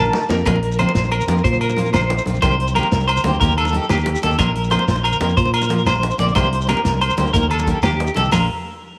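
A short drum fill opens this carefree highlife guitar band excerpt, while an electric guitar at the edge of break-up and a round, up-front fingered bass sound from the very start. The groove moves in a straight 12/8 at 122 BPM in Bb major, with congas, shekere and agogo bells filling in the percussion. A bright, full-bodied steel-string acoustic guitar enters at 0.3 seconds with picked accompaniment in its middle register, beneath the electric guitar's compressed, slightly broken-up arpeggios coloured by tremolo and tape echo. The vintage kit has a punchy kick, medium-tuned snare and rolled-off top, while grainy shekere and hard-handed, thin-skinned congas sit in the background and the agogo bells ring with a saturated edge. The chords cycle from Bbsus2 through Cm7 to Eb twice before landing on Bb at 8.3 seconds, all wrapped in a moderate plate reverb.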